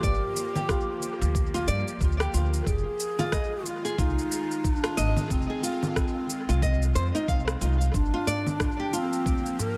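A 91 BPM groove in 4/4 with a swung sixteenth-note feel sets this mystical organic downtempo excerpt in F dorian, with a thumpy, gritty electronic kick, an overdriven layer of electronic shaker, congas and rim click carrying tape echo, and an up-front, growly pizzicato upright bass under a Gm7 to Fm7 and back progression. A breathy, hollow low wooden flute with vibrato sings the melody through analog delay, while a fingerpicked nylon-string guitar plays arpeggios through tape echo and a tense, detuned sawtooth string-like drone holds sustained chords with phaser, reverb and sidechain pumping. A deep clay-shelled darbuka played with soft hands joins at 8.1 s, all set in a small, echo-heavy room with a warm overall glow.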